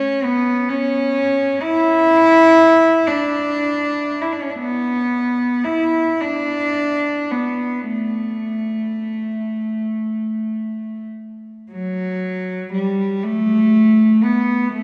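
Nostalgic and lyrical, this classical excerpt features a single bowed cello playing alone, unfolding freely in 6/8 with a rubato feel at a slow pulse of 24-45 BPM counted in dotted quarters. The cello sounds rich and pure, with a soft attack and the floating quality of sul tasto bowing as it moves between F#3 and E4. Tuned to A4 = 436 Hz, the line carries a slightly lowered pitch. The instrument sits up front yet feels distant, heard from further back in a church with a long, wet reverb of 3.8 seconds. At 11.7 seconds a new section begins, carrying the phrase on until the passage is cut off at 14.8 seconds.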